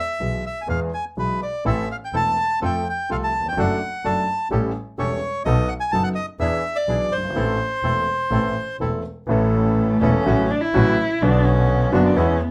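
A reedy, up-front bandoneon carries the melody of this passionate, dramatic tango, cut from a longer piece and played rubato at 125 BPM in A minor over an intimate grand piano with audible action noise, a woody, distant bowed double bass with vibrato and a second bandoneon's dark stabs, until at 9.3 s the music turns to A major and an expressive bowed cello with vibrato and portamento takes a solo in a moderate club reverb.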